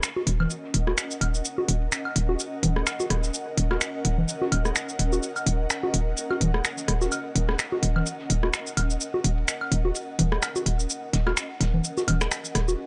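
A dry, gritty hardware recording with little reverb carries this quirky, cool slice of minimal techno at 127 BPM in Eb minor, swung on the 16ths and resting on a single Ebm7 chord. Up front, a clicky electronic kit of cabasa, finger snaps and hi-hat sits beside overdriven analog bongos, congas, woodblock and rim click that enter at 0.2 s, while a hollow, bouncy FM bass knocks on a low Eb from 0.3 s with punchy, decaying notes. Underneath, an ethereal, airy pad sustains with slow attack, ensemble chorus, built-in reverb and tremolo, and a very quiet acoustic studio kit adds bright ride cymbal and a medium-tuned snare.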